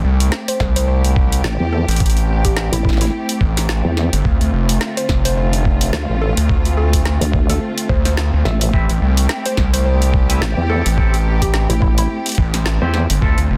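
Swaggering and playful, this glitch hop excerpt rides a swung 4/4 groove over chords that move from Am7 to Dm7 and back. An aggressive, distorted synth bass with tube saturation sits up front beside a nasal, vowel-sweeping wobble bass treated with chorus. A pitched-down, thumpy electronic kick and an overdriven kit of woody snare and bright hi-hats drive the beat. Lush bowed strings hold sustained chords with vibrato and sidechain pumping, while a percussive wave-folded pluck carries the melody in the background through chorus and dub echo. At 8.7 s a clean, twangy electric guitar enters with stabs, roughened by 12-bit sampler grit and shaped by a low-pass filter, sidechain pumping and dub echo. The mix is dry, dense and heavily limited.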